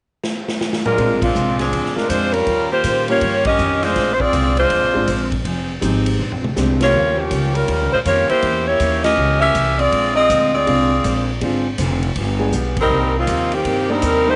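A clear, up-front saxophone section carries the melody of this brassy, swinging big band jazz excerpt, its close-miked vibrato sitting prominently over a 161 BPM swing in Bb mixolydian. A drum kit with a boomy kick and medium-tuned snare opens with a fill at 0.2 seconds and returns with fills around 6.2 and 12.5 seconds, while band accents land at scattered points through the passage. Beneath it, a pizzicato upright bass with gut strings gives a woody, thumpy bottom, while a picked dreadnought acoustic guitar sits in the background with audible finger squeak. A grand piano with short sustain and audible action noise comps intimately, dropping out at 7.0 seconds and returning at 10.7. The harmony moves through ninth chords, an Edim7 and a Dm7b5 to G7b9 turnaround landing on Cm7, all heard in a moderate echo-chamber reverb with small-room ambience and a softened, rolled-off top end.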